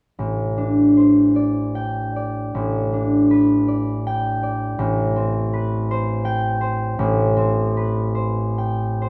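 A dark, warm production places the concert harp up front inside a recital hall whose reverb lets each note hang in the air for nearly two seconds. This brief passage of classical solo harp is cut from a longer piece, and it carries a gentle, mysterious mood. The harp plays alone from 0.2 to 9.1 seconds, its thumb-plucked strings sounding acoustic and ringing across a range from A1 up to G5. The music moves in a lilting 6/8 with a free, rubato feel, so the pulse bends rather than holding strictly steady. Its harmony drifts from Am7 to Gadd9/A at 2.5 seconds and settles on a hazy Am9 at 4.8 seconds, keeping the colour shadowed.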